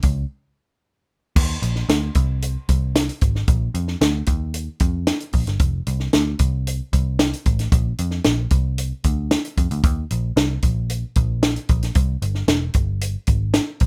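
Uptempo 1960s-style soul at 113 BPM in a straight 4/4, this uplifting, warm groove is carried by a compact cocktail drum kit and a vintage muted picked electric bass that both play from start to finish, with a brief break from 0.3 to 1.4 seconds. The dry, natural kit sits up front with a punchy kick, a high-tuned snare, hi-hat and crash cymbal, while the dark, round, foam-muted bass moves between E1 and F2, sharing the front of the mix with it. A moderate studio reverb gives the short cut a touch of room, and the tuning sits at A4 = 441 Hz.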